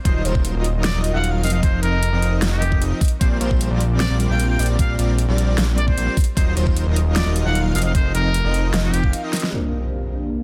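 A buzzy, breathy trumpet with a metal mute carries the melody in an intimate jazz style, its delayed line pumping with the sidechain over a playful, lush future bass drop at 152 BPM in a half-time 4/4 feel, in Bb major. Beneath it, a smooth, full-bodied supersaw riff with 12-bit sampler grit and a low-pass filter runs through chords of Ebmadd9, F7sus4 and Bb69, while an airy, dreamy lead traces soft arpeggios with chorus and delay in the background. A fat, detuned analog bass sits up front alongside a knocking electronic kick, and a big-room dance kit adds a huge overdriven snare and metallic hats, with a drum fill at 9.3 seconds leading out of a short break. At 9.5 seconds an electronic impact lands as a dark, boxy felt-muted upright piano slips in quietly with a gritty, delayed accompaniment. The sound is dense and heavily limited, set in a digital ambience, and the clip is cut from a longer piece.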